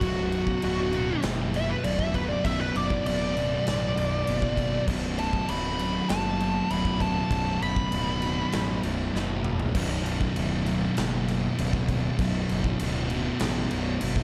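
Stoner and doom metal, hypnotic and ominous, in which a compressed, up-front fuzz lead guitar with wah and digital delay plays a solo until 8.8 s over two dark, distorted rhythm guitars grinding a low riff in the background, a growly overdriven electric bass, and a big-room acoustic kit with bright cymbals and a tight kick that rolls through a fill at 9.1 s, all in a dry, dark production cut from a longer piece.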